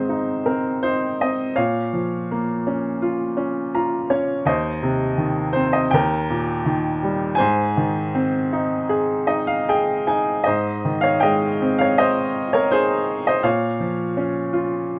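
A bright, woody upright piano sits up front in a calm, lyrical classical excerpt in Ab major at 82 BPM, played with rubato in 4/4 in a moderate studio reverb, drifting through Ab, Bbm and Cm/Eb to Eb and back, with fills at 3.4 and 8.9 seconds before a new section opens at 10.5 seconds.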